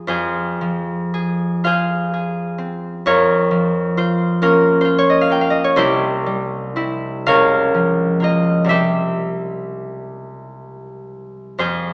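A bright, ringing concert harp, fingerpicked and up front, plays alone from 0.0 to 11.9 seconds in this mysterious, wistful classical fragment in F minor and a slow, rubato 6/8 at 37-46 BPM, moving from Fm through Bbm/F and C to Bbm/Db and back to C across a range from C2 to G5, with a wet recital-hall reverb that places the listener further back in the room and gives a small-speaker sound, tuned to A4 = 436 Hz and cut from a longer piece.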